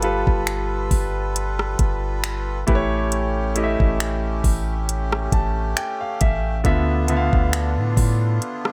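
Moody and late-night, this contemporary R&B excerpt at 68 BPM sets an intimate grand piano with audible action noise and long sustain over reedy, slowly beating accordion chords, a deep sine-toned 808 bass, and an up-front electronic kit of finger snaps, metallic hi-hat, knocking kick and rim click. The chords move from G9 to A7 to Dm69, and the piano plays a polished fill from 4.9 to 6.6 seconds.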